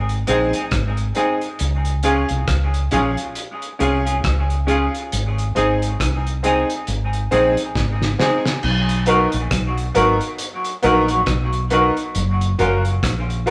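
A slow, swung roots reggae groove in 4/4 at 68 BPM, with 16ths swung at 59%, sets an uplifting, warm mood in this excerpt cut from a longer piece, tuned a touch flat to A4 = 439 Hz. The woody fretless electric bass sits up front with a round, hollow-body tone, joined almost at once by a cloth-damped, thuddy drum kit whose muffled, gritty sound carries a fat snare, tight kick, rim clicks, hi-hat and dark crash cymbal. From 0.3 seconds a clean, picked electric guitar adds accompaniment through tremolo and dub echo, while a bright upright piano plays stabs with a brilliant, worn, slightly detuned character, its action noise audible and its notes sustaining long. The harmony moves from Ab to Db and back to Ab, then a drum fill at 7.8 seconds leads into a second section at 8.6 seconds that shifts to Cbmaj7 and then Gbmaj7. The whole band sounds like it is playing live together in a stone room with a wet reverb.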